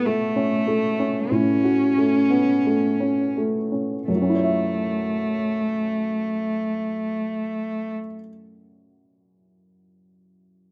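Neoclassical piano and strings in F# minor, melancholic and fragile, drifting in rubato 4/4 at 42-49 BPM and slowing over the first 4.1 seconds: a woody, polished upright piano with short sustain and a slapback echo carries the accompaniment over F#m/A moving to F#m7, while a single bowed cello, smooth and even with vibrato, sings a rich second line until 7.9 seconds, after which the piano continues alone in this fragment cut from a longer piece, captured outdoors with little reverb.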